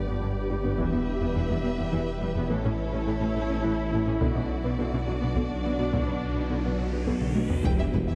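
A cinematic hybrid orchestral and electronic film score in E dorian, this vast, relentless passage moves in a slow 6/8 at 70 BPM as a build-up under a filter sweep. A thick, up-front detuned saw bass with chorus, a deep moody ambient pad in the background, a rich symphonic cello section, a clear filtered viola section, a distant lush violin section on a second line and a very quiet, round pluck arpeggio all begin together, while a heavy-sticked taiko ensemble enters at 0.8 seconds behind the chords moving from G through Em, A and Bm. An electronic riser arrives at 6.1 seconds and a drum fill leads into an impact at 7.6 seconds, where an intense chamber violin melody, a dark soft-attacked French horn section, a mellow tuba and a very quiet double bass section join on Em, all set in a dark, moderately reverberant scoring-stage sound.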